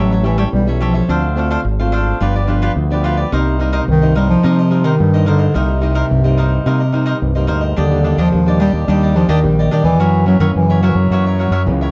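A mellow bass clarinet carries a bittersweet, nostalgic melody in its low register over a growling, overdriven fingered electric bass that sits punchy and up front, while crisp picked cavaquinho and a fingerpicked nylon-string guitar with audible finger squeak fill out this 108 BPM samba in C minor, all through a dark production with light reverb in an excerpt cut from a longer piece, shifting to a new section at 7.8 seconds.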